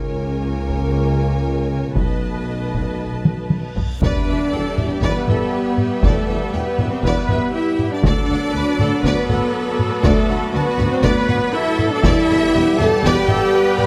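Heavy-sticked taiko ensemble drums, close and dry, enter at 0.7 s and drive this heroic, dark excerpt of an epic orchestral film score at 120 BPM in 4/4, where an expressive, close violin section carries the melody over an intense second violin line, even violas, a bright trombone section and mellow French horns holding chords, and a bass of focused double basses, cellos with portamento and a smooth-topped tuba, until a drum fill, a huge reverse cymbal at 3.7 s and an impact at 4.0 s usher in E minor, when a lush string section joins with sustained chords, all set in a moderate scoring stage reverb.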